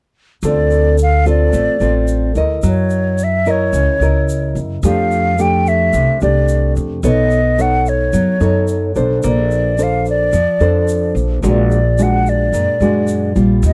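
Bossa nova at 109 BPM, melancholic and wistful, cut from a longer piece, in which an airy, hollow silver concert flute sings the melody with vibrato and tongued notes over thumb-plucked classical nylon-string guitar, a woody, thumpy pizzicato upright bass on gut strings and a faint, grainy egg shaker, moving through chords such as Dm7, F69 and Bbmaj9 in a dry, close 1970s-style studio sound.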